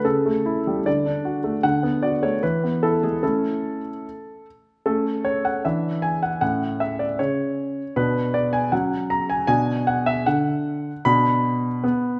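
A clear, intimate grand piano plays alone from the start, up front with audible action noise and short sustain, spanning A2 to B5 in a playful, graceful classical-period sonatina fragment in 2/4 with a supple rubato feel, moving through a second section from 4.9 seconds as its natural tone settles into a moderate recital-hall reverb.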